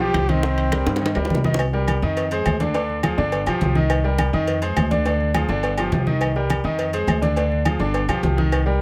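A brilliant, intimate grand piano with audible action noise accompanies this passionate, driving salsa fragment in C minor at 208 BPM, joined up front by a dark, thumpy pizzicato upright bass on gut strings, while a bright, punchy trombone with vibrato solos only until 1.3 seconds and a drum fill runs from 0.9 to 1.6 seconds, all over low-tuned congas, tight high-tuned bongos and cowbell, ringing metal-shelled timbales and agogo bells, and very quiet, dry, woody claves in light reverb as the harmony cycles through Cm7, Fm7, Ddim and G7.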